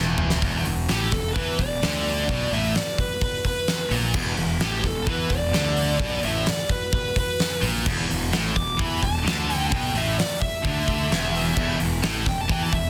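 Heavy and driving, this hard rock passage at 129 BPM in straight 4/4 opens on a drum fill from a huge arena kit with a fat snare and punchy kick before a dark, distorted lead guitar enters at 0.9 s with a bluesy solo over an E5 chord, backed by bright, scooped high-gain guitar riffs, a very quiet sludgy overdriven guitar, a growly fuzz fingered bass, a compressed double-tracked rhythm guitar that returns at 7.9 s, and a faint, moody analog pad of detuned sawtooth and sub-octave tones with chorus, set within studio reverb and a dense, heavily limited modern master.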